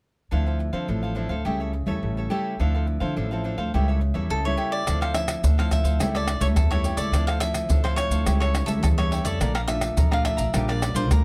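Set in a straight 4/4 groove, this lively, nostalgic samba-choro fragment opens with a woody, growly pizzicato upright bass up front beneath a warm, crisp picked cavaquinho and a fingerpicked classical nylon-string guitar, cycling between Dm9 and A7/C# voicings before turning to Bbmaj7 and Gm7/Bb near the end. A bright, crisp second cavaquinho takes the melody at 4.3 seconds, and at 4.9 seconds a close, dry percussion section of maracas, tight surdo, pandeiro and tamborim joins up front. A light reverb surrounds the ensemble.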